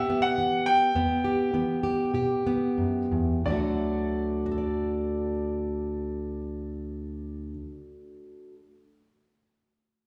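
In a straight 4/4 feel between 88 and 108 BPM, this uplifting, nostalgic folk fragment in D major slows over its opening bars before the harmony moves from E minor to D at 3.4 seconds. A bright, woody upright piano with long sustain and a slapback echo carries the melody between D5 and G5 until 7.5 seconds. Beneath it, a full-bodied, up-front fingerpicked jumbo steel-string guitar accompanies until 8.7 seconds, all heard as a live gig through the venue's PA with lush hall and club reverb.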